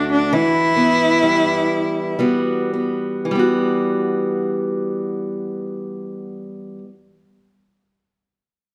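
A rich, focused bowed cello carries the melody up front with vibrato and a smooth top, singing a longing, haunting Celtic slow air in E minor before falling silent at 2.2 seconds. A boxy picked acoustic archtop guitar, with audible finger squeak, accompanies from the start on an Emadd9 chord and continues alone until 6.9 seconds. The rubato 3/4 pulse sits between 50 and 71 BPM and slows through the opening passage of this fragment cut from a longer piece, all set in a moderate recital hall reverb.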